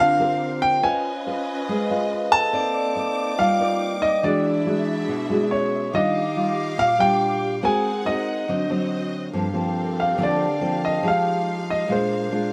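A straight, even bossa nova pulse in four drives this smooth, intimate fragment of a longer piece, carried by an up-front nylon-string guitar whose thumb-plucked, dark classical tone anchors the accompaniment. On top, a grand piano sings the melody with a natural, long sustain and audible action noise, set in plate reverb and sitting close to the listener. Behind it, a metallic, ringing vibraphone struck with medium hard mallets and its motor off adds colour in the background, while a lush symphonic string section holds bowed chords with soft attack and expressive vibrato. A hollow, pure-toned alto flute with a straight, tongued delivery and lifted highs traces a quiet second line from 2.3 to 8.7 seconds. The harmony glides through rich ninth and eleventh chords such as Gm11, Ebmaj9 and D7b9, and at 9.3 seconds a new section begins as the piano takes a solo over a light overall reverb.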